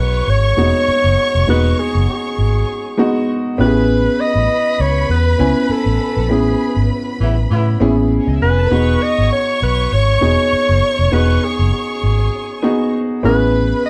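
A mellow alto saxophone carries the scooped, vibrato-laden melody in this smooth, warm soul excerpt at 100 BPM with a light sixteenth-note swing in E major, set over a worn, boxy grand piano with audible action noise, a round, punchy foam-muted electric bass up front and a lush, bowed, dark string section as second line, while a jazz-style horn section with octave doubling adds stabs from 7.2 to 8.0 seconds inside a band accent, the group playing together in one moderately reverberant studio room.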